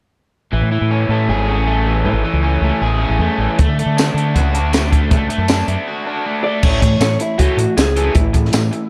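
Indie rock with a carefree, wistful air, this excerpt opens on a crunchy, double-tracked overdriven guitar riff touched with spring reverb, alongside a growling, round fingered bass that is itself overdriven and punchy, moving from Amaj7 to D. A compact cocktail drum kit with a high-tuned snare and rolled-off top joins at 3.6 seconds, and after a brief break at 5.9 seconds, a dark, slightly broken-up melody guitar through a small old amp, compressed and fed through analog delay, arrives at 6.4 seconds, just before the harmony settles on A. The dry sound keeps the riff guitar, bass and drums up front.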